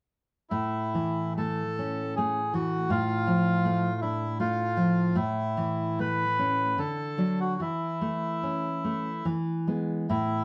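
In a rubato 3/4 lilt drifting between 67 and 82 BPM, this serene romantic duo in A major unfolds as a short cut from a longer piece, with both instruments sounding together from 0.5 to 10.4 seconds. A reedy, vintage, band-limited bandoneon carries the melody up front between E4 and B4, while a dark, deep classical nylon-string guitar supplies fingerpicked accompaniment from A2 to D4, moving through A, Dm/A, A, D and A/E before settling on E. A wet studio reverb with a 0.5-second decay places the pair further back in the room, lending the whole a warm glow.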